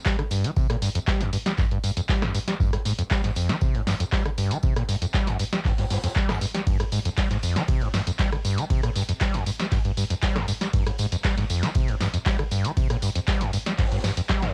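A dry cassette home recording carries this driving, raw acid house excerpt at 118 BPM in G phrygian, where a squelchy, gritty sawtooth acid bass riff with resonant filter sweeps, distortion, subtle chorus, analog delay and sidechain pumping sits up front over a deep, tape-warm electronic kick, a punchy analog drum machine of handclaps, hi-hat, ride cymbal, rim click, snare and tambourine, and a very quiet, distant brushed jazz kit with a high-tuned snare, before a drum fill at 14.0 seconds.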